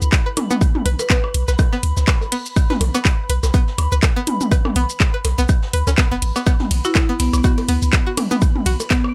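A punchy electronic kick drives this hypnotic, quirky minimal techno at 123 BPM in B minor, with a 56% swing on the 16ths and metallic hats, handclaps, ride and shaker from a house kit, while a very quiet, roomy brush kit and tape-echoed electronic blips and toms add detail. A deep sine sub bass with tube saturation and sidechain pumping sits up front beneath a twangy, string-like resonator pluck riff treated with chorus and digital delay. A cloudy granular pad holds a high B in the background, and a woody, dry hard-mallet marimba melody flickers in at 1.0 seconds before returning at 6.8 seconds in this short cut from a longer piece.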